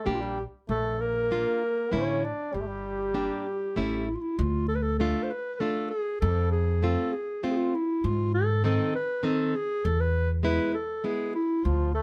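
Klezmer in 3/4 at 98 BPM, bittersweet and soulful, moving from G dorian sharp4 to D dorian sharp4 at 4.4 s and speeding up throughout, with a dark, close-miked clarinet carrying the melody in classical style over fingerpicked nylon-string guitar with fresh strings, a woody, thumpy pizzicato upright bass on gut strings, and a bright, distant, roomy trombone playing a second line until 4.1 s and returning at 11.6 s, all in light reverb.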